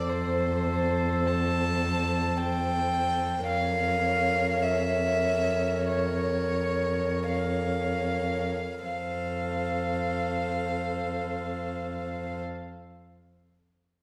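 This tender, serene excerpt from a slow romantic movement for string quartet opens with all four players sounding together. A solo violin carries the melody up front, its intimate sul tasto tone airy and softly attacked, with light vibrato. Beneath it, a second violin plays a dark, close-ranged line in the background, while a viola adds pure, floating accompaniment with gentle onsets. A close, up-front cello holds a single low bass note with a woody, vibrato-rich sound. The rubato pacing slows through the opening phrase as the harmony shifts from F to B-flat minor over an F bass at 3.5 seconds, returning to F as a new section begins at 8.8 seconds. A wet scoring-stage reverb surrounds the quartet, giving the sound a spacious glow.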